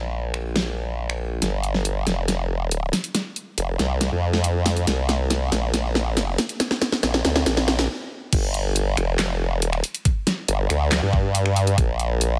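Menacing and chaotic, this half-time heavy wobble dubstep passage centres on an up-front, compressed sawtooth-and-sine wobble bass swept through a formant filter with overdrive and chorus, backed by a tape-warm drum kit with a huge snare, bright hats, handclaps, finger snaps and crash cymbal that runs a fill through the build-up from 1.4 seconds and stops at 7.9 seconds before the drop at 8.3 seconds, where a knocking electronic kick joins, all set in a lightly reverberant space.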